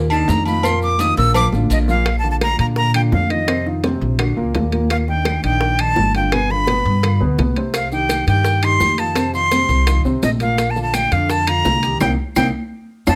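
Afro-Cuban jazz at a brisk 169 BPM in Bb major, this sunny, danceable passage is cut from a longer piece and sits in a straight 4/4. A breathy, reedy jazz flute carries the melody up front with vibrato and tongued attack, opening with a short solo before a drum fill at 1.5 seconds ushers in the fuller second section. Beneath it, a growly, pizzicato upright bass with a woody bite sits forward in the mix, while a dark, mellow grand piano supplies the chords. The percussion is layered: ringing metal-shell agogo bells and timbales close and dry, tight high-tuned cowbell and bongos played with soft hands, thin-skinned congas and woody claves set back in a large room, and grainy maracas that drop out at 2.1 seconds and return at 7.7 seconds. The harmony moves through colorful turns such as an augmented Bb and a G7 before settling on Cm7 as the band hits an accent near the close, all captured with close, detailed microphones and a light reverb.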